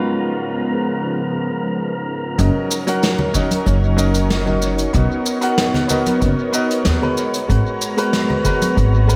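Sunset chillout in F# major at 94 BPM, blissful and smooth, cut from a longer piece. A clear, present grand piano with analog delay and a silky, evolving string machine with ensemble chorus hold the harmony, over an airy, breathy wind-like tuned noise texture, while a dark, slightly broken-up electric guitar with tape echo sits in the background and plays a short melody until 1.7 seconds. At 2.4 seconds a woody pizzicato upright bass, a deep overdriven electronic kick and a distant, roomy brush kit with dub echo enter, and bright hand-played bongos and congas join at 2.9 seconds, all set in an echo-heavy mix with moderate chamber reverb.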